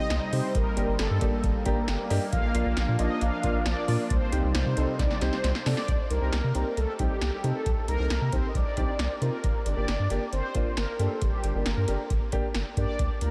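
A straight 4/4 pulse at 135 BPM from a punchy, metallic-hatted electro drum machine drives this melancholic synth-pop excerpt in C dorian, where a round, nasal analog bass sits up front, a concert grand piano adds deep accompaniment with a fill at 1.4 seconds, a sweeping sawtooth pad holds detuned chords until 5.9 seconds, ending as a drum fill closes the first section, and a mellow, brassy synth lead with vibrato and diffuse delay carries the melody through a dreamy mix soaked in huge reverb.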